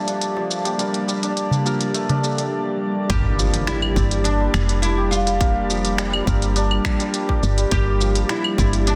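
Meditative and earthy, this organic downtempo piece opens on a worn, slightly out-of-tune tine electric piano, a warbling lo-fi pad and bright, ringing santur arpeggios over an organic electronic kit of claves, finger snaps, smooth hi-hats and shaker, with a clay-shelled darbuka under soft hands until 2.4 s. At 3.1 s a fretless, plectrum-plucked oud melody, a round, up-front woody FM bass pumping with the sidechain, a tight electronic kick and a background impact arrive together, while shimmer reverb trails the keys, santur and oud inside a lush hall and a dense, heavily limited master.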